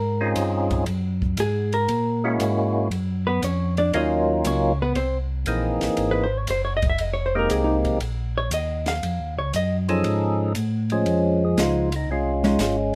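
A clean, fingered hollow-body electric guitar stands out up front, taking a compressed solo from the start until 11.1 seconds. Alongside it, a percussive tonewheel organ carries the melody through a slow rotary speaker, its fat, lightly overdriven voice marked by third-harmonic percussion. A second tonewheel organ plays the bass line, round and mellow with chorus vibrato and its own slow rotary speaker. A compact cocktail kit of kick, snare, hi-hat and ride sits low in the mix, dry and acoustic, with dark cymbals, a high-tuned snare and a punchy kick. This soulful, bluesy soul jazz organ trio swings through chords such as Dbmaj9, Bmaj9#11, C7alt and Fm11 under light reverb, moving into a new section at 11.1 seconds as the harmony returns to Dbmaj9.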